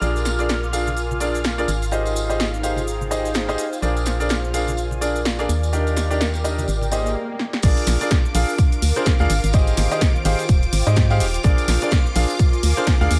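A clear, boxy grand piano riff leads this feel-good piano house excerpt at 126 BPM, its short notes roughened by vintage 12-bit sampler grit and trailed by delay, over a hollow, organ-like FM bass that sits up front with a fast attack and dark decay. Around them, a shimmering string machine holds bright sustained violin chords through ensemble chorus, while an airy, breathy pad with a slow attack and long release drifts in the background, with both strings and pad pulsing to sidechain pumping alongside the piano and bass. A punchy analog drum machine supplies a dry, overdriven snare with hi-hat, shaker and crash in a swung 16th-note groove, and compressed tambourine and congas with hard hands add texture further back. The harmony moves between Bb7, Abmaj7 and Ebmaj7 in Bb mixolydian, giving an uplifting, sunny lift. An electronic swell at 6.9 s leads into a brief stop and drum fill, and the drop lands at 7.6 s, where a layered, tape-warm electronic kick punches in up front and drives the rest of the passage.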